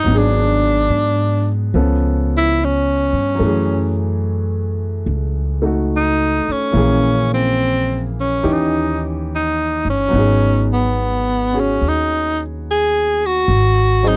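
Intimate and smoky, this jazz ballad fragment swings gently as a bright tenor saxophone carries the melody with vibrato and scooped notes, sitting present and up front throughout its 14.2 seconds. A clear, smooth concert grand piano with a deep, vintage bass register provides the accompaniment through rich, altered chords, while a woody, thumpy pizzicato upright bass anchors the low end. The sound is dry and close, like a 1970s studio session.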